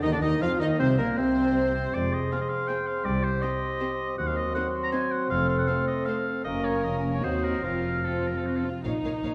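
Set in a moderate concert hall reverb, this restless, dramatic excerpt from a quick classical-period orchestral movement in 3/4 moves with a rubato feel. Hushed violins sing the melody with light vibrato and soft sul tasto bowing while a second violin line, a distant clear oboe, an airy flute and a bright clarinet in the background weave supporting lines. Beneath them, a mellow bassoon and intimate violas accompany, a tight horn section holds sustained chords, and woody dark cellos with close double basses anchor the bass; the winds and horns stop at 8.7 seconds while the strings carry on to 9.3.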